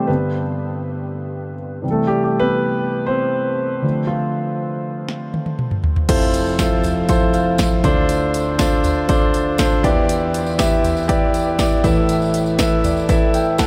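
Soaked in a dreamy, cavernous reverb, this hopeful, uplifting piano-driven pop excerpt opens with a concert grand playing alone, up front with deep bass and long sustain, until an electronic, layered house drum kit enters at 5.1 seconds with a fill, bringing a punchy kick and snare and warm hats, while a jingly acoustic tambourine sits in the background from 6.1 seconds and the piano closes on a fill at 12.6 seconds.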